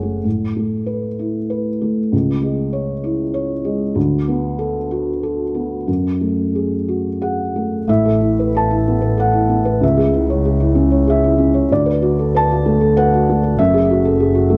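Unhurried and rubato, the music moves in 3/4 at roughly 88-100 BPM, its pulse bending freely rather than holding a strict beat. This neoclassical piece for piano and strings, cut from a longer work, carries a longing, fragile mood, tuned to A4 = 436 Hz. A felt-muted upright piano sits up front as the accompaniment throughout, its thick felt giving a soft, mellow, intimate tone that spans from C#2 to A5. A single bowed double bass, played sul tasto with a gentle attack, light vibrato and a smooth top, sounds briefly at the very start and then returns at 7.9 s to underpin the second half from F#1 to D2. The harmony circles through Asus2, C#m, Bm7/D and F#madd9, then repeats that same cycle from 7.9 s. Light reverb and a dark, warm production keep the whole recording hushed and private.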